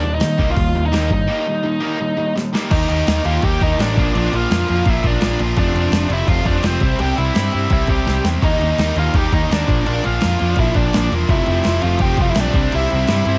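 A bright, overdriven lead guitar sits up front in this rebellious, energetic punk rock excerpt, picking out its melody through a touch of tape echo. Beneath it, a distorted electric guitar and a raw garage guitar, both picked and overdriven, churn out riffs in the background, one edged and the other mellower. A growly, punchy overdriven electric bass drives the low end with an amped bite. The dusty, sampler-style drum kit is compressed and gritty, with a thumpy kick, a medium-tuned snare, hi-hat and crash cymbal. A break runs from 1.3 seconds, closing with a drum fill, and at 2.7 seconds a very quiet, double-tracked overdriven guitar joins the riffing as the chords cycle through Eb, Bb, F and C. Light reverb gives the band a modest sense of room.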